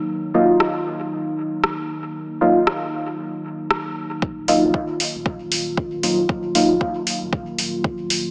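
Dub techno at 116 BPM in Eb minor with a lightly swung 4/4 feel, this hypnotic excerpt opens on a warbling, lo-fi, detuned pad holding an Ebmadd9 chord with a slow attack, chorus and sidechain pumping, soon joined by up-front, nasal, full-bodied chord stabs treated with phaser and dub echo and by a deep house kit of metallic hi-hats and rim clicks with its own dub echo, before a layered, tape-tinged electronic kick and a soft, round sub bass sitting in the background arrive at 4.2 s, the mix set in a lush hall reverb with a small-speaker tone.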